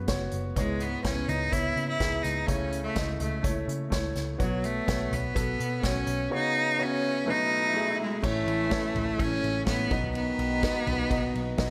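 Over a straight 4/4 pulse from an acoustic drum kit played with bundle sticks, with dark cymbals and a punchy kick, this uplifting piano-driven pop fragment sets an intimate grand piano, its action noise audible, and a round, foam-muted vintage electric bass beneath an intense, up-front solo cello with vibrato and airy bowing from 0.6 seconds, while a very quiet electronic swell appears at 6.8 seconds and a mellow, distant French horn section adds a second line in the background from 8.2 seconds, heard in a small room with light reverb.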